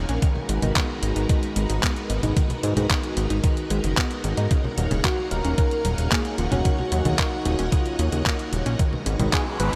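Italo disco at 112 BPM in a straight 4/4, this nostalgic, melodramatic excerpt from a longer piece moves from Abm7 to Ebm7 and back, all under a moderate cathedral reverb that leaves the mix dreamy and soaked. A lush, vintage string machine holds sustained ensemble chords with slow attacks and an ensemble chorus, while an analog pluck, round and nasal with a noise layer, spins arpeggios in the background through chorus, phaser and a diffuse ambient delay. Up front, a fat, saturated analog bass with a detuned sawtooth edge and a filter pluck anchors the low end, joined by a thumpy, tape-flavoured electronic kick drum. A detuned 8-bit digital drum machine, re-recorded in a small room, adds congas, handclaps and hi-hat. At 5.0 seconds a thick, bold unison lead enters with vibrato and delay, mellow despite its detuned sub-octave weight, and a background riser appears at 9.3 seconds.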